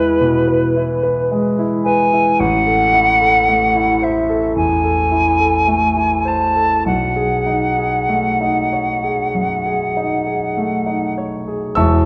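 A pure silver concert flute carries the melody with expressive vibrato and tongued notes, floating above a clear concert grand piano whose natural tone reaches into deep bass as it accompanies through E, Am6 and B13. This pastoral, luminous impressionist duo moves in a slow, rubato 4/4 at 48-56 BPM, its dark production bathed in a 1.5-second recital hall reverb. Cut from a longer piece, the flute falls silent at 11.1 s while the piano sounds on until 12.1 s.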